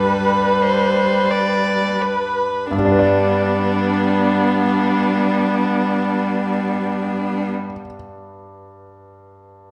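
In a rubato 3/4 at 45 BPM that slows over the first 2.7 seconds, this tender fragment of a slow romantic movement for piano quartet in G major sets a rich, smooth violin melody up front against an intimate, airy-bowed sul tasto cello second line, an expressive viola accompaniment with vibrato and portamento, and a bright, brilliant grand piano whose action noise and long sustain carry on alone from 7.5 to 9.7 seconds, inside a wet scoring-stage reverb and a dark, warm production.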